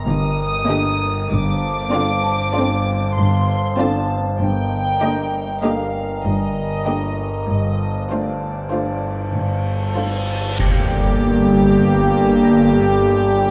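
A resonant, overtone-sweeping drone, a glassy glass harmonica and floating sul tasto violins open this ominous, uneasy suspense-score cue in G minor at 97 BPM in 5/4, soon joined by bowed double basses, distant cellos, second violins and violas over dark, reverberant harmony, with a delicate, bell-like celesta appearing from 2.2 seconds, dark cymbals and concert bass drum from 7.5 seconds, and an electronic reverse cymbal leading into an impact and a roomy French horn section at 10.6 seconds as the chords settle on Gmadd9.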